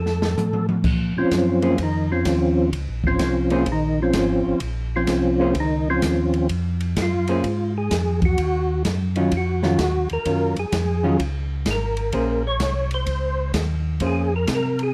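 Swinging at 128 BPM in 4/4, this bluesy, smoky soul jazz organ trio fragment in Bb minor opens with a short fill on a small-room acoustic drum kit with a boomy kick and rolled-off top, and then at 0.8 s a percussive tonewheel organ with third harmonic percussion, slow rotary speaker and chorus vibrato takes a round, up-front solo over a mellow organ bass line, while a dark, clean, picked hollow-body electric guitar accompanies from 1.6 s through Bbm9 and Ebm9 chords in light reverb.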